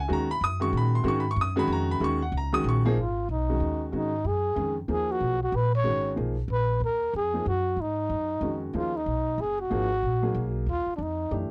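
Intense and hypnotic, this modal jazz waltz swings in 3/4 over a minor eleventh chord, with a woody upright piano comping and a pizzicato upright bass on steel strings holding the low end. At 3.0 s a dark, breathy solo trumpet with soft attack and vibrato enters with an intimate, whispered melody, all three parts sitting up front in a dry, close 1970s-style studio sound in this brief extract from a longer piece.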